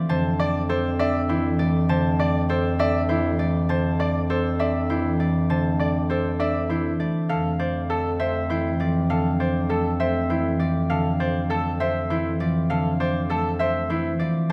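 A warm bass clarinet sits up front in a solo, classical-style role, anchoring this bright, hypnotic minimalist pattern piece on a low F2. It moves at 100 BPM in a straight 3/4, holding to a single Fmaj7 harmony in F major throughout the 14.5 seconds of this section cut from a longer work. A fingerpicked concert harp supplies the accompaniment in its lower register between D3 and D4, its acoustic tone ringing clearly, while a Celtic harp carries the melody higher up, from A4 to A5. A bright grand piano enters at 0.1 seconds with brilliant, natural-sounding arpeggios between E4 and D5. The parts share a moderate scoring stage reverb with a 1.7-second decay, giving the patterns a spacious, shimmering glow.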